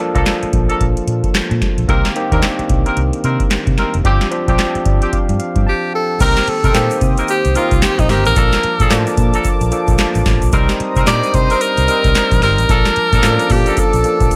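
A barky tine electric piano opens this confident, bouncy new jack swing excerpt in C dorian at 111 BPM, joined by tight horn stabs, a round foam-muted fingered bass and a booming analog drum machine with crisp snare and handclaps, before a forceful tenor saxophone takes the melody at 5.7 seconds and a shimmering chorused pulse-width pad and grainy egg shaker enter in the background at 6.2 seconds.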